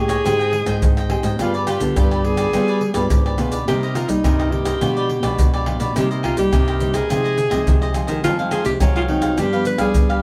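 Opening on a nostalgic, lively samba and choro at 105 BPM, a warm, up-front alto saxophone sings a smooth, jazz-style melody with vibrato and scooped notes over crisp picked cavaquinho, a fresh-stringed classical nylon-string guitar and a small, thumb-plucked nylon-string guitar carrying the bass with audible finger squeak, as maracas, deep surdo, pandeiro and tamborim join close up at 0.1 seconds, all moving through chords like Abmaj7, G7b9 and Cm7 within a wet studio ambience heard from further back in the room.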